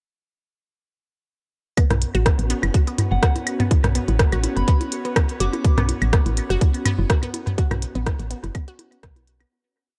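Minimal techno at 124 BPM with a light 16th-note swing and a quirky, hypnotic mood: from 1.8 seconds a tight, up-front four-on-the-floor kick drives clicky programmed hats and rim clicks, tape-warm electronic claves, toms and bongos in cross rhythm, and a woody, round FM bass riff in syncopation. In the background a juicy, squelchy blip pluck repeats a 9-step loop that drifts against the bar through phaser and tape echo, while an airy, breathy pad with chorus shifts its chords slowly, and both pump along with the bass under sidechain compression. A soft, pure synth bell adds short answering phrases from 3.1 seconds in an echo-heavy digital ambience, and the whole piece fades out from 6.9 seconds.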